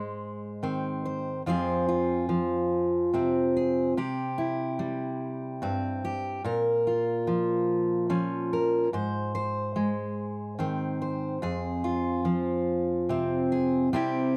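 Intimate and reflective, this short folk passage, cut from a longer piece, features a single fingerpicked steel-string acoustic guitar playing alone from 0.0 to 14.4 seconds in 6/8. The dreadnought-style instrument sounds full-bodied and sits up front, its voice spanning from F2 up to C5, with finger squeak adding a human, tactile touch. The harmony opens on Ab before settling into Fm at 1.5 seconds, then moves through C, Bbm and Ab and returns to Fm. Close, detailed microphones capture the guitar with a light reverb, giving the performance a quiet, personal feel.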